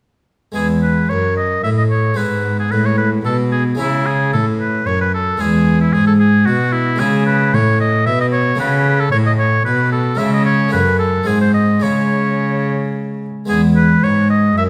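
Baroque-style classical sonata movement in a flowing, dance-like 3/4 at 112 BPM, where a light-vibrato oboe sings the melody up front over a close, plucked harpsichord with two sets of strings and a rich, gut-strung bowed cello, moving from E major into C# minor at 7.0 s and back to an E chord at 13.5 s, all set in a recital hall's reverb in this short cut from a longer piece.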